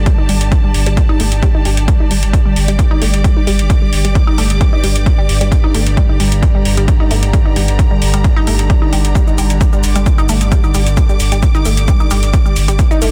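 Hypnotic and driving, this 13.1-second excerpt of peak-time techno in G minor runs at 132 BPM in a straight 4/4, anchored by a punchy, up-front electronic kick and metallic, pumping hi-hats and shaker over a thick, saturated sine sub bass on G1, while a squelchy, resonant blip pluck with phaser, overdrive and digital delay carries the riff, a filter sweep moves across the synth arpeggio sound, a chorused analog drone evolves in the background, a lush bowed symphonic string section adds vibrato texture, and a barely audible riser enters at 12.8 seconds, all in a dense, heavily limited master with little reverb.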